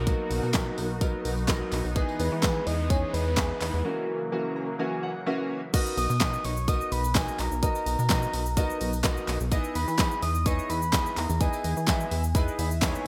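A straight dance-pop pulse drives this carefree, euphoric excerpt from a longer piece, built on a punchy, layered pop drum kit with fat snare, kick, hi-hat, handclaps, shaker and crash cymbal, all wrapped in gated reverb and sitting up front. A retro, glossy synth bass with a detuned, plucky, dark edge pumps to the sidechain beneath it, while a clear concert grand piano with deep low end and short sustain supplies polished accompaniment through analog chorus. A soft, round lead synth layered in octaves carries the mellow melody with vibrato, chorus and delay, and a filtered supersaw swell glows in the background with evolving, sustained chords until 5.7 seconds. A very quiet, jingly tambourine adds close acoustic sparkle throughout. The harmony moves through lush seventh chords, with a break at 3.8 seconds and piano fills, the last arriving at 12.4 seconds, all set in light digital ambience with a bright 1980s-style sheen.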